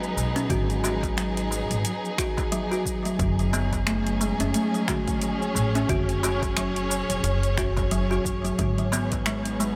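Organic downtempo at 89 BPM with swung 16ths and an earthy, hypnotic mood, where bowed studio strings hold smooth, expressive chords with vibrato and portamento under sidechain pumping, a woody kalimba plucks short, hollow arpeggios through tape echo, a dark, growly pizzicato upright bass anchors the low end, an overdriven deep house kit of cabasa, finger snaps and metallic hi-hats is joined at 0.5 s by a punchy, overdriven electronic kick, and a crisp, saturated darbuka sits in the background, all in light reverb as the harmony moves between G#m7 and F#madd9.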